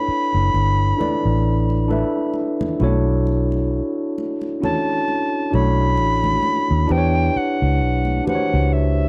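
A dry, close 1970s-style studio sound frames this soulful, late-night R&B and neo-soul fragment with a swung sixteenth feel, where a pure, wooden alto recorder with vibrato, a soft attack and slapback echo carries the melody over a mellow tine electric piano heard through its built-in speakers, a dark, foam-muted fingered electric bass sitting round and up front, and bright, high-tuned congas struck with hard hands in the distant background from 0.5 seconds.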